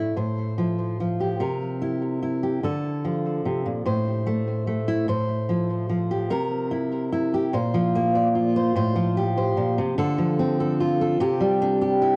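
Folk in waltz time with a nostalgic, hopeful mood, this brief cut from a longer piece features a solo fingerpicked steel-string dreadnought acoustic guitar, full-bodied and up front with audible finger squeak, colored by cassette tape and tape echo in a lightly reverberant home-recorded space, shifting at 7.5 seconds onto a Bbsus2 chord before settling on Cadd9.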